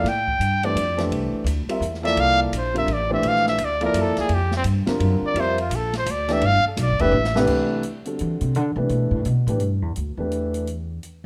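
Swinging in a brisk 3/4 at 170 BPM, this spiritual, hypnotic modal jazz excerpt opens with a present, vibrato-rich trumpet solo over dark, long-sustaining baby grand piano chords, a woody, growly upright bass and an open jazz kit with dark cymbals and a boomy kick, until a drum fill at 7.1 s carries the music from F major into C lydian for a pizzicato bass solo at 7.5 s, heard in a large studio reverb.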